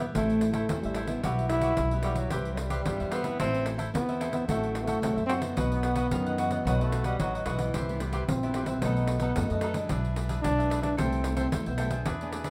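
A close, roomy studio sound frames this lively, joyful samba-choro excerpt at 111 BPM, where a punchy, forceful trombone carries the melody with scooped notes over crisp picked cavaquinho, a small fingerpicked nylon-string guitar in the background, a woody, growly pizzicato upright bass up front and jingly hard-hand pandeiro, while a breathy, whispered tenor saxophone with vibrato adds an intimate second line from 2.0 to 8.1 seconds across a progression built from Am, Cmaj7 and B7.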